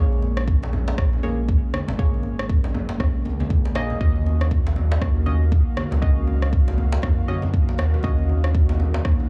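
A detuned sawtooth pad sits in the background with slow-attack chords, joined by round, chorused analog key stabs with delay and an up-front, smooth gliding synth bass with portamento and vibrato, all pumping against the sidechain in this hypnotic afro house cut from a longer piece at 119 BPM. Soft-handed congas and a deep djembe enter in the background in the first fraction of a second, followed by a layered electronic rim click at 0.4 seconds and a deep, up-front kick drum at 0.5 seconds, all riding a swung sixteenth-note feel. The harmony moves from Bbm7 to Ebm7 at 4.0 seconds, and the sound is dry and gritty, with a small room ambience.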